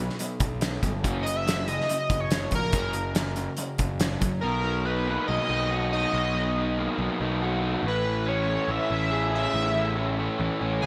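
Jangly and upbeat, this indie rock excerpt sets a shimmering, detuned pulse-width synth lead with chorus and delay over a dark, overdriven garage guitar riff and a fuzzy picked electric bass, while a loose acoustic drum kit with a fat snare, punchy kick and gated reverb drives things only until 4.3 seconds, all inside a lush hall and bright 1980s-style digital production as the chords move from B5 and F# to Bmaj7 and Amaj7.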